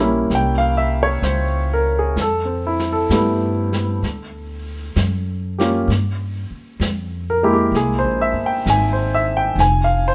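A close, intimate sound with light reverb opens this smoky jazz ballad, cut from a longer piece and moving at a slow 65 BPM in 4/4 with a gentle swing. An up-front concert grand piano, rich in deep bass with its action noise faintly audible, plays the accompaniment alongside a woody, thumpy pizzicato upright bass. A dark, smooth brush kit of snare and hi-hat joins at 0.3 s in a small-room setting, as the harmony drifts through C7b9, Fmaj9#11, Fmadd9 and C7b13 before settling on Fm.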